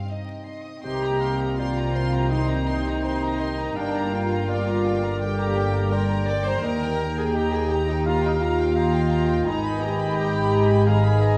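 This cinematic, emotional film score for orchestra moves at 84 BPM in 4/4 with a rubato feel in C minor, sorrowful and moving in mood, and it is cut from a longer piece. A studio violin section carries the melody from the start, bowed sul tasto with light vibrato and an intimate closeness, while a clear, close-miked solo clarinet and a chamber violin section with soft attacks trace second lines in the background. A rich, floating viola section provides the accompaniment alongside a very quiet, fingerpicked concert harp ringing out arpeggios. From 0.8 s, a hollow, distant flute section and a solo cor anglais with vibrato add further second lines, a mellow French horn section holds sustained chords with a smooth top, and a dark symphonic double bass section joins a cello section to anchor the bass. The harmony moves from Cm through Gm7 and Eb to Abmadd9, and the dark production sits in generous scoring stage reverb with a layer of vinyl crackle.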